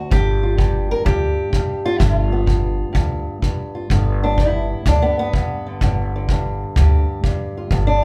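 Acoustic country blues with a laid-back, swaggering swing, cut from a longer piece and played live in one room with light reverb. A dark, boxy fingerpicked ladder-braced acoustic guitar sits up front carrying the melody over a G7 chord, moving to G when the steel-string acoustic guitar takes a solo at 3.9 seconds. Underneath, a woody, thumpy pizzicato upright bass on gut strings and a punchy kick drum played with brushes hold the groove.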